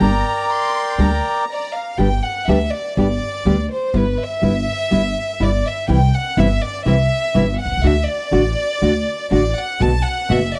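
A reedy, dark bandoneon leads the opening of this tense, dramatic tango fragment in G major, carrying the melody over thumb-plucked classical nylon-string guitar and a woody, thumpy pizzicato upright bass on gut strings, while a close chamber violin section plays a bowed second line. The bandoneon stops at 1.5 seconds, and from 2.0 seconds the violins take a solo, intimate and sul tasto with light vibrato and a soft attack, as the harmony moves through G, Em/G, C, D and Bm7. At a rubato 122 BPM in 4/4, the sound is dry and close in a small room, in a 1970s studio style.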